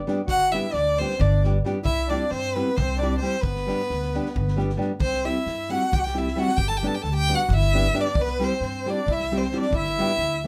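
A rich, expressive violin leads from 0.3 s, one bowed player sitting close and up front, singing with vibrato and sliding portamento across its upper range. This festive, wild excerpt of Balkan folk has a wedding-band spirit, moving in 7/8 at 267 eighth-note beats per minute with a straight feel in G major, alternating between G and C chords. A small, fingerpicked nylon-string guitar with fresh strings and a loose indie drum kit start things off at 0.1 s. The kit stays in the background with a tight kick, a medium-tuned snare and a rolled-off top in a small room. A reedy, full accordion with dry tuning carries a second line beneath the violin, while an upright bass plucks a dark, woody low end on steel strings. A moderate studio reverb gives the band a short, natural space, and the piece moves into a new section at 5.0 s before it is cut off at 10.5 s.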